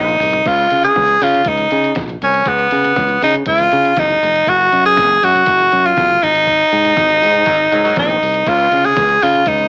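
Celebratory and glamorous, this disco excerpt at 120 BPM in Db major puts a raspy, gritty tenor saxophone up front with a forceful, vibrato-laden pop solo line, washed in cassette tape and plate reverb, while a bright, growly fingered electric bass drives underneath. A distant horn section with light vibrato adds brief stabs at 0.0 and 7.5 seconds, and a muffled, pitched-down sampler-style drum kit with a thumpy kick sits in the background beside very quiet, low-tuned congas played with soft hands. An opening drum fill and band accents push the chords from Dbsus2 through Db9, Gbsus2 and Ab7sus2, all heard through a homespun cassette sound like a small speaker in a modest room.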